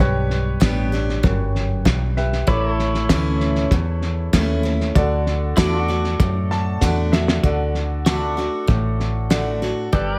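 A straight 4/4 groove at 97 BPM carries this sunny, down-home honky-tonk and classic country excerpt in D major, with a muffled, cloth-damped drum kit with a fat snare and tight kick and a dark, round, foam-muted electric bass up front beneath a full-bodied picked dreadnought acoustic guitar, a brilliant baby grand piano with long sustain, and a twangy, clean pedal steel holding sustained chords with volume swells, the chords moving through G, A and D in a close, dry sound, and a piano fill from 6.2 seconds joined by a drum fill at 6.8 seconds.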